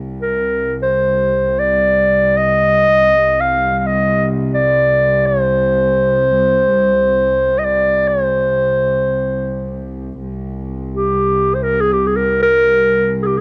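A dark, woody cello section opens with a bowed drone on a low C, its vibrato sitting distant behind the melody. Moments later, at 0.2 seconds, a solo clarinet enters up front in a smooth, classical style, spinning a soulful, hypnotic line in free time over the low hum of this Turkish makam ensemble. The sound is dry and close, like a 1970s studio recording with little reverb, and the passage is cut from a longer piece.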